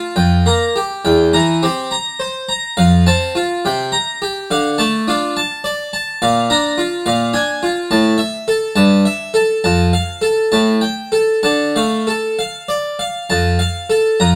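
Flowing and solemn, this short excerpt from a longer baroque-style suite movement features a solo harpsichord in 6/8, moving with rubato at roughly 63-72 BPM in dotted quarters and settling into D minor from 6.2 seconds. The Flemish-style instrument sounds plucked, full and brilliant, its three sets of strings spanning E2 to Bb5, set up front in close, detailed miking with light reverb. Its harmonies pass from Gm7/F and C7/E through Dm, Bb and A5 before landing on F at 13.3 seconds.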